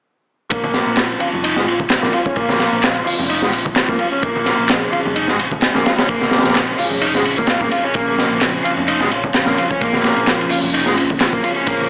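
Through a small-speaker sound with light small-room reverb, this funky, swaggering breakbeat groove is driven by a crunchy, up-front drum kit with a high-tuned snare, tight kick and dark cymbals, while an overdriven, picked garage guitar riff carries a filter sweep, a swirling phased sawtooth pad holds sustained chords, a round hollow-body bass and overdriven, layered handclaps sit in the background, and very quiet ringing congas are played with hard hands.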